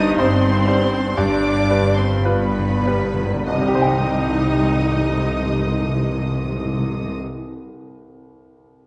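A rubato 4/4 pulse broadens as the music slows through its opening, giving this romantic movement for piano and orchestra a tragic, passionate weight. A clear, up-front grand piano carries the melody across a broad span from low bass to upper treble. Around it, a dark, intimate violin section plays sul tasto with light vibrato on a high melodic line, a second, smoother violin group sits in the background, and woody, lush violas supply accompaniment with vibrato. Beneath, a rich, floating cello section and distant double basses hold the bass with soft attacks, while hard-mallet timpani on calf heads add an articulate fill from 1.2 to 3.5 seconds. The harmony moves from a C minor chord over G to G7, then resolves to C minor at 3.5 seconds. The strings and timpani fall away at about 7.2 seconds, leaving the piano to close this fragment of a longer piece inside the generous reverberation of a scoring stage.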